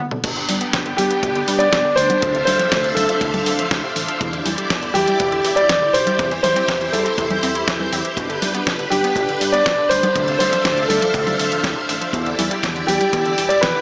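Italo disco at 121 BPM in a straight 4/4, this romantic, sunny excerpt cut from a longer piece opens on a drum fill before a dark, smooth grand piano carries the melody up front from 1.0 s, its long sustain trailed by digital delay. Lush string-machine chords with ensemble chorus sit forward alongside a clean 12-bit drum machine with a fat, tape-warm snare, congas, toms, hi-hat and crash. A glossy pulse-width synth bass holds the low end, while a distant, tight acoustic kick and a round analog pluck playing arpeggios through chorus and tape echo stay further back. The harmony moves through G, Dm7, Em7 and C/E, all bathed in a lush hall reverb with a small-speaker character.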